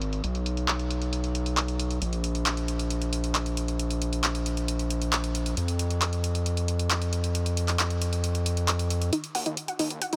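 Uplifting trance with a driving, euphoric mood, this short cut opens on a gritty, aggressive synth bass, high-passed and saturated, alongside a punchy, overdriven analog drum machine whose handclaps and hi-hats sit dry and up front. At 9.1 seconds a build-up begins as a lush, detuned unison pluck enters with delayed arpeggios and a filter sweep, arriving with the first chord and carrying on until the cut ends at 10.2 seconds.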